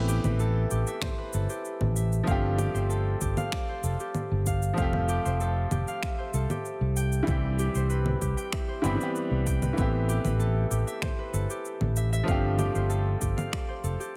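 Sunset chillout in A minor at 96 BPM, relaxed and wistful, with a brilliant baby grand piano comping and a ringing, fingerpicked concert harp playing arpeggios above it, both carrying tape echo, over a dark, round fretless electric bass that sits up front. Overdriven electronic cabasa, congas and finger snaps set the groove, joined at 1.0 s by a deep, layered electronic kick drum, all inside a digital ambience. The harmony moves through Am9, G9sus4, Fmaj9 and Cmaj7 before returning to G9sus4, and this excerpt from a longer piece fades out from 13.1 s.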